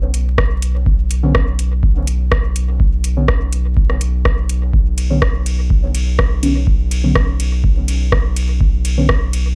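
A dry, gritty hardware recording with vinyl crackle frames this hypnotic, meditative dub techno cut from a longer piece at 124 BPM in B minor, where a round, up-front sub bass pumps under the sidechain from the start, a booming analog drum machine adds metallic hi-hats, ride cymbal and rim clicks, an electronic kick thumps deep, and from 1.2 seconds a dark, mellow chord stab drifts through chorus, phaser, dub echo and a filter sweep.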